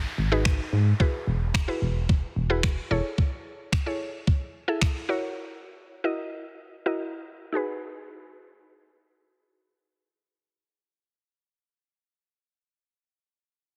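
A punchy, dark FM bass and an electronic downlifter open this driving, confident dance-pop excerpt in G# minor at 110 BPM, with the bass pumping against a sidechain before it drops out at 3.0 seconds. A woody, mallet-like synth pluck with chorus and a low-pass filter sweep carries the chords from G#m7 through Eadd9, Amaj7/E and F#7. A gated 80s digital drum machine with a thumpy kick and finger snaps plays only until 4.9 seconds, leaving the up-front pluck alone to the end, all under light reverb and a heavily compressed, radio-like sound.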